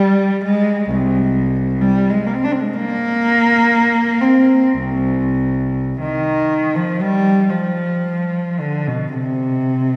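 Rubato phrasing in 4/4, drifting between 47 and 66 BPM, carries this yearning, mournful classical excerpt in C minor, where a single bowed cello plays solo from low C2 up to D4, its intimate, up-front sound shaped by soft attacks, light vibrato and a warm sul tasto tone, all set within a long church reverb of 3.0 seconds that places the listener further back in the room.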